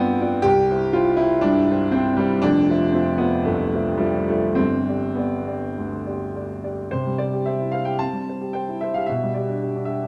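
A baby grand piano carries this short romantic character piece alone, its open tone and long sustain placed up front and reaching from F1 up to A5. The mood is hopeful and warm, in C major and 4/4, with a rubato feel that lets the tempo drift between 100 and 124 BPM. The harmony moves from C through Fmaj7 to G, then returns to C at 6.9 seconds, where a new section begins, before settling on G/B at 9.1 seconds. A moderate recital hall reverb with a 1.5-second decay surrounds the instrument, and the production leans dark. Tuned to A4 = 441 Hz, this fragment is cut from a longer piece and runs just over 10 seconds.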